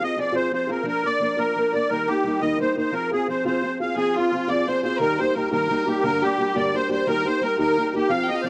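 A dry, close recording with a 1970s studio character and a touch of light reverb carries this driving, dark and lively Celtic folk piece in 6/8, cut from a longer work. A reedy, shimmering musette accordion sits up front with the melody, over a boxy parlour-style steel-string acoustic guitar fingerpicking a shadowy accompaniment just as close. At 4.0 s a single bowed fiddle joins with a second line, rich and intense with light vibrato yet set distant in the mix.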